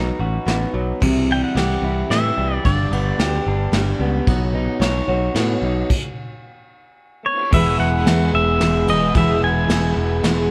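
Folk rock with a heartland rock lilt, this nostalgic, jangly passage in 3/4 is cut from a longer piece and rides a straight feel over chords moving from B through C, G and Badd9 to E. A full-bodied jumbo steel-string acoustic guitar is picked in the background, joined by a slightly broken-up, lo-fi electric guitar riff through a small old amp, while a growly, direct electric bass and a soft brush kit with a tight kick and medium-tuned snare sit up front. From 1.3 seconds a twangy pedal steel guitar, played with fingerpicks and slide, carries the melody with volume swells and tape echo. A stop at 5.9 seconds breaks the flow before the pedal steel returns. A very quiet shouting tonewheel organ enters at 7.2 seconds, turning on a slow rotary speaker with key click, and at 7.5 seconds the music lands on E as a dark, woody upright piano adds mellow accompaniment. Light reverb and the worn, warbling pitch drift of old cassette tape give the whole recording a faded, homespun sheen.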